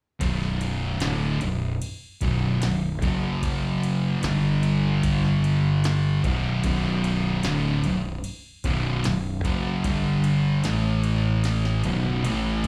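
Heard as a live gig through a club PA with light reverb, this stoner and doom metal passage, cut from a longer piece, has a brooding, hypnotic weight. Three thick fuzz guitars carry the riff from 0.2 seconds onward. One is dark, distorted and picked up front, a second sits in the background, and a third, double-tracked and very quiet, lies beneath them. A growling fingered electric bass, overdriven and heard both direct and amped, holds down the low end. An electro analog drum machine with a deep kick, punchy snare, ride cymbal and toms keeps a straight 4/4 with a tape-warm analog tone, and it plays a drum fill at 11.4 seconds. The harmony moves from B minor through F#, G and A power chords before landing on B5.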